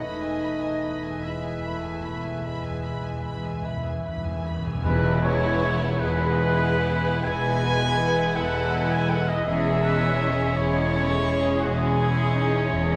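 Close, expressive bowed double basses and an even cello section anchor this tender, rubato romantic movement for symphony orchestra in 12/8, beneath a lush, distant violin section carrying the vibrato melody, with second lines from a rich chamber violin section, a hollow flute, a warm oboe and a clear clarinet, while a mellow bassoon, a smooth viola section, a dark French horn section and a ringing fingerpicked harp fill the harmony; round soft-mallet timpani and dark cymbals with tam-tam open the passage, a tight trumpet section enters with stabs at 4.8 seconds, joined by quiet trombone chords, and the timpani drop out at 6.0 seconds, all in a reverberant scoring-stage space.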